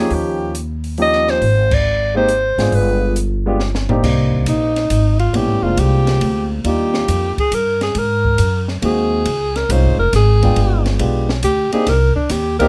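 Swinging in 3/4 at 138 BPM, this moody, cool C minor fragment of small-group swing and bop opens with a bright alto saxophone melody, punctuated by a band accent at 1.6 s, that stops at 3.2 s. A drum fill from an open acoustic kit with a high-tuned snare and boomy kick then leads to a breathy, scooped, vibrato-laden second alto saxophone solo from 4.5 s, carried by a woody, growly pizzicato upright bass up front and a concert grand piano with deep bass playing chords such as Cm9 and G7b9, captured with close, detailed microphones and light reverb.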